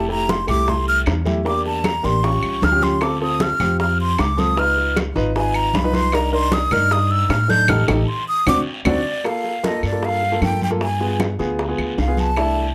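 Lightly reverberant, this short cut of driving, sophisticated Afro-Cuban jazz moves at 154 BPM in G minor. A breathy, mellow, close-miked silver flute with a straight, tongued tone carries the melody up front through the opening section, while an intimate grand piano with audible action noise plays accompaniment over a thumpy pizzicato upright bass. Tight, high-tuned bongos, ringing congas, raspy guiro and woody claves fill out the percussion, with a band accent from 7.7 seconds and a drum fill just before a new section arrives at 9.2 seconds.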